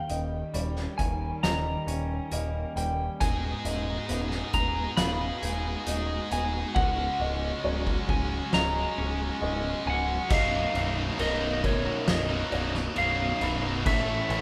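Soaring and cinematic, this post-rock passage, cut from a longer piece, builds for its first 10.3 seconds as a dark, clean lap steel carries the melody with slide and volume swells over distant bowed strings with vibrato and portamento, a twangy fingered electric guitar and a mellow felt-muted upright piano playing arpeggios, a growling overdriven bass up front and a roomy drum kit with a fat snare and punchy kick, while a bright distorted guitar riff enters at 3.2 seconds and a second one joins at 10.3 seconds as the clean guitar drops out, the whole ensemble set in a reverberant recital hall.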